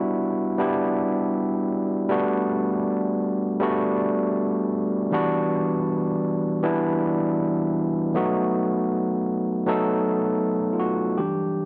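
An overdriven tine electric piano opens this short soul excerpt on its own, sitting up front with a bright, barky bite that comes through a combo amp. The mood is cinematic and bittersweet, carried in a straight, unhurried 4/4. The chords move from Em9 to Gmaj7 at 2.1 seconds, back to Em9, then settle on B7 at 8.2 seconds, leaving the harmony hanging. The piano stays between E3 and A4, and its gritty edge sits in a moderate plate reverb with a long tail. Tuned slightly below standard pitch, the solo part plays until 11.7 seconds.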